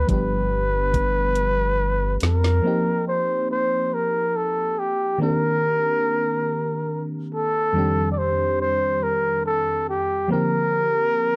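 A breathy, whispered flugelhorn carries the melody with vibrato and scooped notes over a phaser-washed, warbling FM electric piano in this sultry, yearning excerpt of slow six-eight R&B, where a rubbery square bass and a smooth drum kit with knocking kick, woody snare and metallic hats play only until 2.6 seconds, a drum fill closing their stretch before the horn and piano continue alone over lush ninth, six-nine and suspended chords in a dry, close 1970s-style studio sound.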